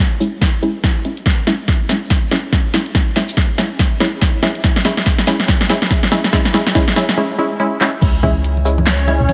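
A muted, detuned dub chord stab with chorus and dub echo opens this brooding, meditative deep dubstep excerpt, its filter sweeping across a build-up over a half-time, swung groove from a punchy, up-front deep house kit of crash, handclaps, hi-hat, shaker and snare, plus a layered electronic kick. After a drum fill and a brief break from 7.2 seconds, the drop lands at 8.0 seconds with a thick, saturated sub bass and congas set back in the mix, joined by a reversed, granular texture that swells in brightly. A lush hall reverb gives the whole cut a spacious, dreamy depth.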